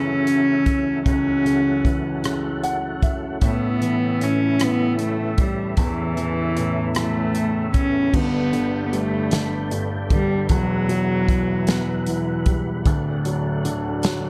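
A pure, floating bowed cello played sul tasto with a soft attack carries the melody through a slapback echo until 12.4 s in this dramatic, melancholic six-eight pop ballad excerpt, set over an open, long-sustaining baby grand piano that adds a fill at 2.2 s, smooth organ chords shimmering through chorus vibrato and a slow rotary speaker, and an airy, polished country drum kit with a punchy kick entering at 0.3 s, all wrapped in a dark, warm production with light studio reverb.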